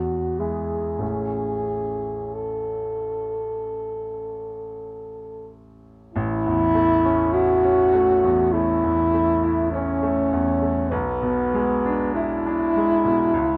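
Romantic classical music for French horn and grand piano, this serene excerpt in A major moves slowly at 45-52 BPM in 4/4 with a flexible, rubato feel. The mellow horn carries the melody with a light vibrato and a roomy, classical tone. The bright concert grand accompanies with deep bass and long sustain, its harmony moving from E to A and arriving at E7/B near 10.9 seconds, captured through close, detailed microphones with light reverb as the opening section gives way to a second at 6.1 seconds.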